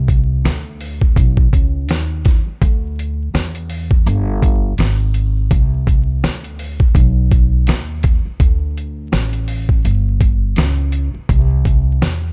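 The sound is dark and dry, with a soft bed of vinyl crackle and a dusty, lo-fi character throughout this 12.3-second cut from a longer jazz-hop track. The cool, smooth groove sits at 83 BPM in 4/4, with a swing of 58% on the 16ths giving it a relaxed, head-nodding lilt. An acoustic upright bass opens at 0.0 s, played pizzicato on gut strings with a woody, thumpy tone that stays low and up front. From 0.1 s a soul sampler-style drum kit of hi-hat, kick and snare joins, compressed and carrying vintage 12-bit grit, with a thumpy kick and a fat snare placed close to the listener. Together the two parts form a lean, gritty hip hop foundation that runs through the whole passage.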